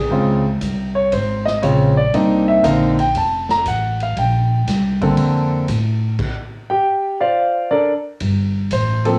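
Sophisticated and playful, this short excerpt from a longer jazz piano trio piece swings at 118 BPM in Bb major, with a clear, up-front concert grand carrying the melody from the start through chords moving from Dbmaj7 to Cm9, F and Bbmaj9 before settling on Gsus4 at 8.2 seconds. A woody, pizzicato upright bass enters at 0.1 seconds beneath it, and a swinging big-band drum kit joins at 0.6 seconds with ride, hi-hat, crash, a medium-tuned snare and a boomy kick, sitting low in the mix. The piano and drums carry a cassette-tape coloring, and the whole trio sits in a moderate booth ambience with studio reverb on a homemade cassette recording.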